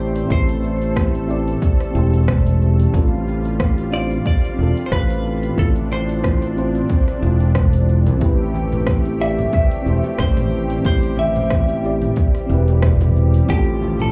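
A growly, up-front fingered electric bass anchors this smooth sunset chillout clip from a longer piece, joined by a punchy overdriven electronic kick and a deep house kit of hi-hat, rim click and shaker swung on the sixteenths. A clean, picked electric guitar carries the melody through lush chorus and tape echo over a soft, round FM electric piano and an airy, detuned unison pad, moving through Am7, G7sus4/A and Dm7/A. Very quiet congas and bongos enter at 8.5 seconds, and the whole mix sounds muffled, as if heard through a wall, steeped in club reverb.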